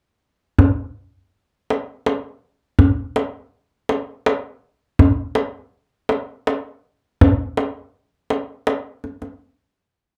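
A lone tombak carries this short Persian fragment, its deep, warm goblet-drum voice struck with hard hands and placed up front in the mix. The drum sounds from 0.6 to 9.3 seconds, moving in free time. A wet small-room reverb gives it a close, enclosed sense of space. The overall production leans dark, which suits the passionate mood of the playing. Cut from a longer piece, the passage stays on a single section throughout.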